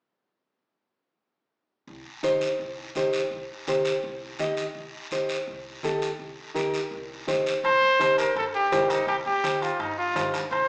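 A clear, punchy trumpet with light vibrato takes the solo up front from 7.7 seconds, riding over a driving, passionate cumbia at 167 BPM in C dorian, cut from a longer piece. Before it, a small, fingerpicked nylon-string guitar carries the accompaniment up front from 2.2 seconds alongside a raspy, close guiro, while low-tuned congas and a woody pizzicato upright bass sit in the background around a C minor harmony. Ringing metal-shell timbales join at 7.6 seconds, and the band sounds live in one room, bathed in a wet large-studio reverb with a small-speaker character.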